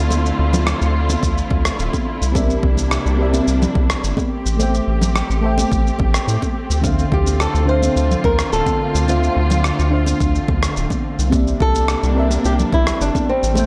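A relaxed, wistful sunset chillout groove in D minor at 107 BPM, set in a straight 4/4 by an overdriven, punchy electronic kick, a gritty sampler-style shaker and rim click, and bright, hard-hand congas in the background, all under a round, deep analog bass that sits up front. Muted strings hold veiled, bowed chords from the start, and a soft FM electric piano with chorus, phaser and tape echo joins at 2.3 seconds over chords moving from Dm7 through C7 and Am7. At 7.1 seconds a boxy, fingerpicked flamenco guitar takes the melody, roughened by vintage 12-bit sampler grit and a digital delay, all in a light digital ambience, in this excerpt cut from a longer piece.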